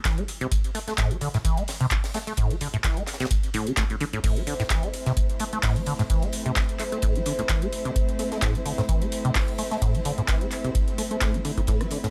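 A hypnotic, raw acid house groove at 129 BPM in A minor opens with a deep, up-front electronic kick drum and a squelchy, resonant liquid acid bass riff, its sawtooth tone carrying a filter sweep, phaser, tube saturation, analog chorus, cassette tape grit and sidechain pumping. Beneath them, a booming analog drum machine adds metallic hats, handclaps, rim clicks and crash cymbal with a tape-warmed character, while a polished acoustic fusion kit sits in the background, its high-tuned snare, hi-hat and ride cymbal airy and filtered, with the cymbals and hats pumping. The 16th notes swing lightly, and the whole piece holds on a single A minor chord. At 4.2 seconds a muted, con sordino string section enters with dark, veiled sustained chords, bowed with vibrato and pumping under sidechain. Light reverb gives the mix a modest sense of space in this short cut from a longer track.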